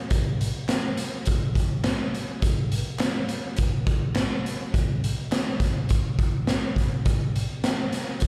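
A raw garage drum kit opens at 0.1 s with hi-hat, a punchy kick and a medium-tuned snare, sitting up front with a gritty, saturated edge and a bright stone-room ambience that pumps. This sunny, dreamy indie pop fragment moves at 104 BPM in a straight 4/4, and a very quiet group handclap joins at 0.7 s, crisp, human and compressed, until 7.8 s. The short cut sounds like a live gig heard through the venue's PA, wrapped in moderate club reverb with a recital-hall sense of space.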